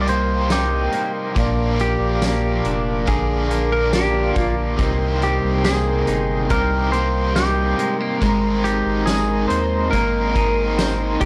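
Blissful and dreamy, this short dream pop excerpt drifts along at 70 BPM in a straight 4/4, cycling through Cm7, Bb and Abadd9 chords. A bright, twangy clean electric guitar carries the melody through a phaser and analog delay, while a second clean, picked guitar spins arpeggios beneath it with subtle chorus and its own analog delay. A biting overdriven guitar, double-tracked and treated with tremolo and lush chorus, fills in the accompaniment, and a soft, flute-like tonewheel organ holds sustained chords in the background with chorus vibrato and a hint of key click. Underneath, a thick, saturated sub bass with a triangle-like tone anchors the low end. A loose indie drum kit enters at 0.1 seconds, sounding distant and roomy with a fat snare, punchy kick, hi-hat and tambourine, its top end rolled off. The whole mix sits in a wet studio ambience with a cassette tape character that adds to the hazy glow.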